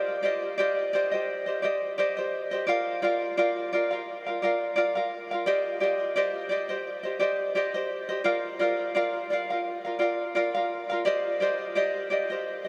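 A fingerpicked tenor ukulele, light and close up front, plays alone through this reflective, wistful acoustic pop excerpt in C minor, moving unhurriedly at 86 BPM with a gentle sixteenth-note swing. Its part circles between Cmadd9 and Bb, with a diffuse ambient delay trailing the notes. The whole short cut is soaked in a huge, dreamy reverb with an 8.1-second tail, giving the sound a hazy, floating sense of space.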